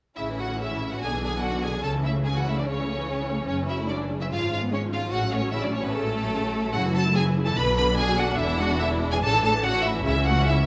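A lively, spirited classical-period movement for string orchestra, heard as a short cut from a longer piece, moves with a flexible, rubato feel through a harmony that passes through F#m and Bm before returning home. The bright, lush first violins carry the melody up front, with the clear, focused second violins on a second line and the rich violas in accompaniment, all bowed with vibrato. The even, smooth cellos sit in the background above intense double basses, and every section plays from 0.2 s to the close in a wet recital-hall reverb.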